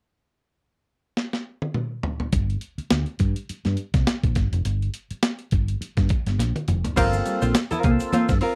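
Funk at 103 BPM in G minor with a hypnotic, swung sixteenth feel, cut from a longer piece and captured dry and close in a 1970s studio style, opening with a gritty, compressed breakbeat kit whose fill at 1.2 seconds brings in a thumpy kick and high-tuned snare before a round, punchy hollow-body bass joins at 2.3 seconds. At 7.0 seconds the band lands on a Gm11 chord as a clean, picked archtop guitar adds accompaniment, a dark, fingered electric guitar plays a riff through subtle chorus, and a lightly overdriven tonewheel organ with key click and slow rotary speaker adds percussive stabs. Soft-handed, low-tuned congas and a grainy, distant egg shaker sit quietly in the background.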